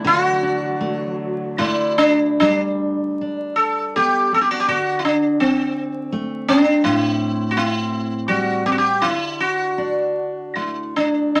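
Nostalgic and wistful, this Celtic slow air drifts in a rubato 3/4 at around 74-85 BPM, with an up-front sitar carrying the melody in a buzzing, shimmering voice ringing with sympathetic strings over full-bodied picked dreadnought acoustic guitar, while a dark, veiled con sordino string section hums sustained chords in the background only until 2.4 seconds, all set in moderate studio ambience with vinyl crackle as the harmony moves from Dadd9 through G, Am7 and back to D in this excerpt from a longer piece.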